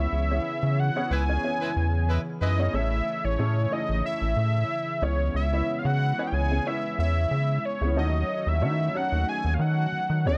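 A light reverb and small-room ambience give this bittersweet, urban pop fragment an intimate, close feel, cut from a longer piece and tuned slightly sharp at A4 = 443 Hz. It moves at 92 BPM in 4/4 with a gentle 16th-note swing, in C# minor, as the chords pass from C#m7 to Amaj7, back to C#m7 at 5.0 seconds, and on to D#m7b5. A fat, detuned sawtooth lead with a sub octave, filter sweep and vibrato carries the melody up front, while a rubbery, bouncy square-wave bass with a resonant filter pluck sits dark and prominent beneath it. A baby grand piano, treated with ensemble chorus, supplies the accompaniment, and a hollow, flute-like pad with chorus holds soft sustained chords in the background. The whole band hits an accent near the start, and a tight, jazz-style horn section with light vibrato and tape echo adds a brief second line between 1.1 and 2.6 seconds.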